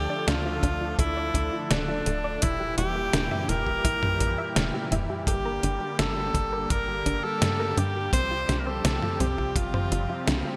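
A clear tenor saxophone with light vibrato carries the melody up front from the start, trailed by digital delay, over soft, detuned supersaw chords that pump against the sidechain, a round, chorused analog pluck arpeggiating in the background through cassette-tape colour, and a tight, nasal sequencer bass with tube saturation. This moody, nocturnal synthwave moves at 84 BPM in 4/4 through Dm, Edim, Gmadd9 and Csus4, with a detuned 8-bit drum machine arriving at 0.3 seconds with overdriven hi-hat, toms and a fat snare in gated reverb, and a tight acoustic kick joining at 0.6 seconds. The bright 1980s-style digital production sits in a lush hall reverb, and the passage is cut from a longer piece.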